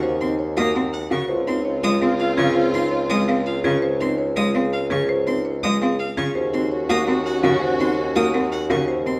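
Minimalist classical pattern music, propulsive and hypnotic, this short excerpt runs at 332 BPM in eighths in a straight 7/8, centered on D-flat major and moving from Ebm7 to Dbmaj7 and back to Ebm7 at 6.4 seconds. Up front, a mellow solo bassoon holds the low bass with light vibrato and a smooth top, joined by a single bowed cello, rich and focused, supplying the accompaniment. In the background a woody marimba with padauk bars carries the melody, while a dark concert grand piano spins arpeggios with a boxy, intimate tone, deep bass and audible action noise. A lone violin adds high arpeggios with vibrato and expressive portamento, sounding distant. From 1.3 to 3.6 seconds and again from 6.4 to 8.7 seconds, an airy alto flute traces a second line as a bowed chamber string section sustains chords alongside, all set in the wet reverb of a recital hall.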